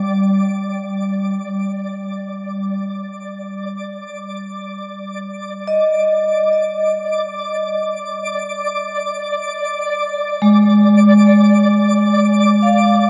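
Serene and warm, this ambient excerpt drifts in free time, suspended in a huge, wet reverb and a dark production. A vibraphone played with medium mallets sits up front, its metallic, ringing tone spun into arpeggios that move between G3 and F5, with a delay trailing each note and the motor switched off. Behind it, a twinkling granular texture hovers higher, between D5 and D6, built from FM tones with an octave-up shimmer, slow attacks, long sustains and extended releases, all bathed in its own reverb. This sparkling, mellow layer sits well below the vibraphone in level and gives the space a soft glow. Both parts play throughout, and the harmony shifts at 2.7 seconds, settling into a long stretch that carries on until the excerpt ends at 13.1 seconds.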